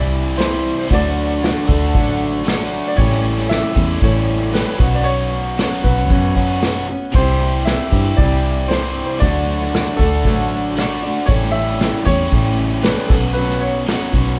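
Warm and nostalgic, this folk rock and heartland rock excerpt moves at a steady 116 BPM in a straight 4/4 feel, with a D major key center and a chord cycle that passes through C, D, A7 and Bsus2 twice across its 14.4 seconds. A warm baby grand piano carries the melody in a mid-high register, its tone treated with tape echo. Beneath it, a dark, picked steel-string acoustic guitar sits in the background with audible finger squeak. A biting, double-tracked overdriven electric guitar plays the riff, while a round, foam-muted fingered bass anchors the low end. An airy, polished acoustic drum kit played with bundle sticks, with a punchy kick and medium-tuned snare, enters at 0.1 seconds and runs until 14.3 seconds, and the whole band sounds as if playing live together in one room, framed by a moderate large studio reverb.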